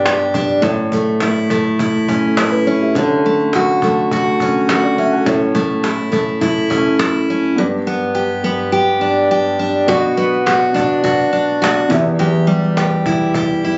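This short acoustic pop excerpt sounds like a phone recording made in the room: light studio reverb and compression, with the top end rolled off above 7.8 kHz. A picked steel-string dreadnought guitar sits up front with a full-bodied tone, carrying the accompaniment from the very start across a range from E2 to G4. A snappy cajon with snares enters at 0.1 seconds, played with soft hands; it has a band-limited, vintage character and sits lower in the mix than the guitar. At 0.6 seconds a felt-muted upright piano joins in the background, mellow and intimate, with its action noise audible. The harmony moves easily through G, A and Dmaj7 before shifting at 9.9 seconds to a new section on Bm and Em, giving the straight, easy-going groove a heartfelt turn.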